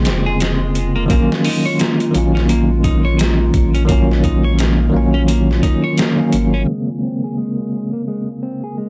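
A bell-like tine electric piano with tremolo and tape echo opens this dark, smoky trip hop excerpt over a warbling, nostalgic pad in the background and a round, deep sub bass, soon joined by picked clean electric guitar arpeggios through analog delay and a gritty, pitched-down sampler-style drum kit with a thumpy kick, all in a dry, lo-fi hardware sound until the drums and bass drop out near 6.5 seconds and a filter sweep carries the guitar to the end at 8.9 seconds.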